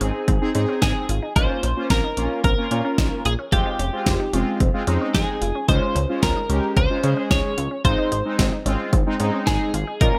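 A straight 4/4 pulse at 111 BPM drives this bright, wistful synth-pop excerpt in Ab major, carried by an up-front deep house drum kit whose deep kick, fat snare and hi-hat have a tape-warm, layered character re-recorded in a small room. Beneath it, a glossy, retro chorused synth bass built from detuned pulse, sawtooth and triangle waves with ring modulation and a filter sweep holds the low end between F1 and Db3. A bold, brassy analog synth brass sits forward in the mix with a sustained, fat accompaniment from Ab3 to Ab4, shaped by its own chorus and filter sweep. Over this, a clean, compressed twelve-string electric guitar carries the melody between G4 and Db5, its picked tone shimmering through analog chorus and tape echo, while a juicy, squelchy resonant blip pluck traces arpeggios with a short decay in the background through phaser and tape echo. The harmony moves from Ab through Bbm, Fmadd9 and Dbmaj7 before returning to Ab at 7.8 seconds, all set in light reverb and digital ambience.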